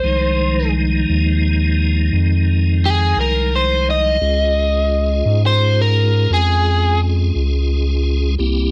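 Brooding and smoky, this slow blues excerpt in 12/8 at 58 BPM sets a crunchy, picked electric guitar melody with slapback echo, which falls silent at 7.0 seconds, against piping tonewheel organ chords with key click, chorus vibrato and a slow rotary speaker, while a deep, dark analog bass sits up front and the harmony moves from Fm7 to Db at 4.2 seconds in a digital ambience.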